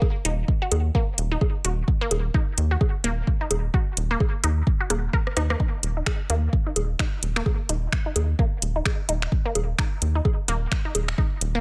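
A dry cut from a longer minimal techno track in Eb minor, hypnotic and sparse at 129 BPM with a 16th-note swing, built on a deep, up-front electronic kick, a rubbery, hollow square-wave bass pumping under the sidechain, a metallic-hatted garage kit of finger snaps, hi-hat and rim clicks, tape-warm bongos with delay, and a squelchy, detuned blip pluck riff run through phaser, sidechain pumping and dub echo, with a short drum fill at 5.3 seconds.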